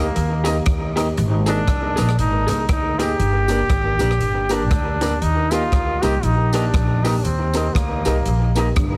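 A swung 4/4 ska bounce, cut from a longer piece, sets a cheerful mood as a brilliant, up-front trombone carries the melody with light vibrato over a woody pizzicato upright bass, slightly broken-up lo-fi guitar from a small old amp in the background, boxy, mellow stabs on a dark upright piano, an airy big-band drum kit with a punchy kick, hi-hat and rim click, and a jingly tambourine, with analog delay on the trombone, guitar, piano and drums and the mix squeezed into a heavily compressed radio sound with light reverb.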